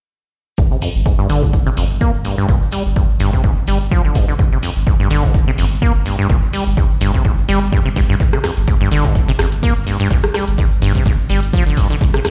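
At 0.6 seconds this hypnotic, driving acid house cut starts at once: a squelchy, resonant sawtooth acid bass riff up front, a deep, thick sine sub bass holding a low G with sidechain pumping, a dry, punchy electronic kick, and a grainy, bright tube shaker tucked in the background. The drum machine's hi-hat and rim click join at 0.8 seconds, adding dry, punchy analog hits to the swung 4/4 groove. The acid line has a fast-attack filter pluck that decays, pushed through tube saturation and tape echo, while the sub bass stays sustained and saturated beneath it over a G5 chord. The vintage, band-limited shaker sits quietly behind the dry drums. The sound is of a big system playing in a bare stone room, with light reverb around this short section taken from a longer piece.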